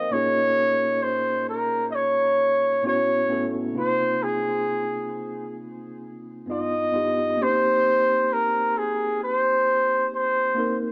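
A warm solo flugelhorn carries the melody up front, its scooped notes sounding roomy and distant under a plate reverb, in a smooth, introspective R&B piece with a lazy swing on the sixteenths. A mellow, clean tine electric piano accompanies from 0.0 seconds, heard through its built-in speakers and set further back, moving through chords from Bbm7 to G7b13 and landing on Cm7. The whole short cut has a moderate studio ambience and a small-speaker sound.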